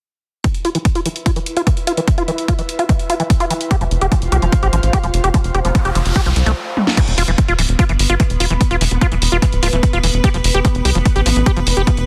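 A straight 4/4 pulse at 147 BPM sets this psychedelic trance excerpt in motion, in E phrygian with a psychedelic, alien mood, cut from a longer piece. An overdriven, up-front electronic kick anchors the groove alongside a layered techno kit with a cracking snare, hi-hat, crash and toms heard in a large room, while a squelchy, gritty acid bass riff pumps against the kick with delay as its filter sweeps through the opening section. An airy, breathy pad fades in under a chorus shimmer, and from 3.8 s a tight, punchy sequencer bass with a plucked, tube-saturated sawtooth tone drives the low end. A very quiet, nasal vowel-sweep wobble bass surfaces briefly as a second line near 5.6 s. An electronic noise sweep and a drum fill at 6.8 s lead through a brief stop into the second section at 7.0 s. There an evolving, morphing wavetable pad with ring modulation, phaser and ensemble chorus carries sustained chords, and the wobble bass returns briefly around 9 s. 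The dense, heavily limited master sits in light reverb, and the chords move between E5 and F5.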